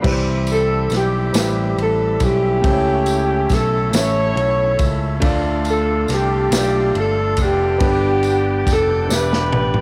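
A clear saxophone section carries the melody up front from 0.5 seconds, its smooth top and light vibrato giving this slow gospel piece in 6/8 a jubilant yet reverent glow over a C, A, Dm, G progression. Beneath it, a bright picked electric bass sits forward with transformer saturation, a natural country drum kit with a punchy kick and medium-tuned snare closes on a fill at 9.1 seconds, and a jingly, distant tambourine adds sparkle. A warm concert grand piano and a gritty, overdriven tonewheel organ through a slow rotary speaker fill in the background, and cassette tape coloring with light small-room reverb gives this short excerpt a homespun feel.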